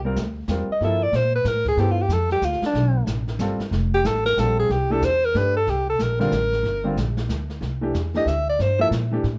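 Small-group swing and bop jazz in a playful waltz lilt, an excerpt where a clear, close-miked alto saxophone takes an up-front solo with vibrato from 0.7 seconds over clear, natural baby grand piano chords, a woody, dark pizzicato upright bass and a distant, roomy brush kit with a boomy kick, all colored by a worn, warbling old-tape drift in a moderate studio ambience.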